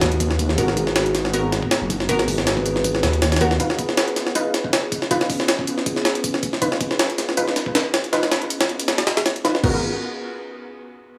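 A dark, frenetic stretch of jungle-flavoured drum and bass opens with a thick, menacing detuned saw bass up front, alongside two pitched-up, sampler-style drum kits with a swung sixteenth-note feel. The louder kit is compressed and gritty, with a thumpy kick, a high-tuned snare, hi-hat and crash cymbal. The second kit sits in the background, re-recorded in a small room, adding hi-hat, a medium-tuned snare and tambourine, and both kits are thinned with high-pass filtering. At 0.6 seconds a bold, punchy, orchestra-hit-like synth stab arrives, bright and layered from detuned sawtooth unison voices and a noise layer, carried by a filter sweep, cassette tape colour, dub echo and its own reverb. The bass drops away at 3.6 seconds as the harmony moves from G#m7 to C#7, leaving drums and stabs to drive on. It returns briefly at 9.6 seconds when the chords settle back on G#m7, and a light studio reverb surrounds the whole mix.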